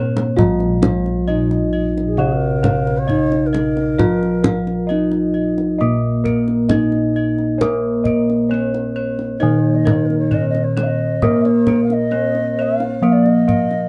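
A straight 4/4 pulse at 66 BPM opens with a brief kendang fill in this shimmering, ceremonial excerpt of Javanese gamelan, the tight, soft-handed drum sounding as if in a small room. A bronze metallophone struck with padded disc mallets carries the airy, soft melody, while a distant bass bansuri adds a tongued second line with vibrato. Beneath them, a dry, close-miked metallophone on wooden mallet gives full accompaniment, up-front bossed gongs with padded beaters hold a round, beating, vintage-toned bass, and a bright horn-mallet metallophone spins arpeggios alongside band-limited bossed gongs from 0.4 seconds, all under light reverb.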